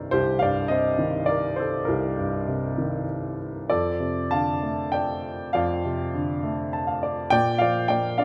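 Classical solo piano in a lyrical vein, this brief fragment cut from a longer piece carries a brooding, moody character in triple metre. A single upright piano plays throughout, its tone woody and natural, sitting up front in the sound and spanning a range from low bass notes to the upper treble. The time is elastic, with uneven beats and rubato giving the phrasing a pliant, breathing quality. The harmony moves from Cm7 to F6 at 3.7 seconds before settling on Bb at 7.3 seconds, just as a short piano fill that began at 6.4 seconds comes to a close. A moderate reverb, like that of a scoring stage, surrounds the instrument with a sense of space and a lingering tail.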